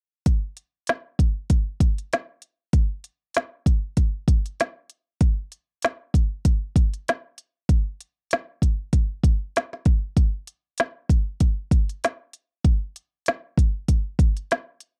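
An organic electronic drum kit carries this dreamy, laid-back indie pop excerpt on its own from 0.3 to 15.0 seconds, with a deep kick, woody snare and smooth hi-hats sitting up front. The groove moves at 97 BPM in 4/4 with a light swing on the sixteenths. The kit has a tape-warm, produced character, re-recorded in a small room, and the sound is dry and close in the manner of a 1970s studio session.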